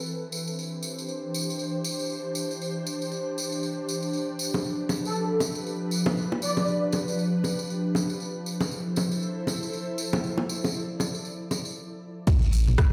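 An ethereal, airy pad opens this spiritual afro house excerpt at 118 BPM with swung sixteenths, its chorused, sidechain-pumped chords moving from Cadd9 through G7 and Fmaj7 over a jingly, bright tambourine, while round, low-tuned bongos enter at 4.5 s, a smooth, expressive sawtooth lead with vibrato and tape echo sings briefly from 5.0 s, and at 12.3 s a deep, tube-saturated sub bass, tape-warm drum kit with smooth hats and an up-front electronic kick arrive on Amadd9, all ringing in a bare stone room on a big sound system.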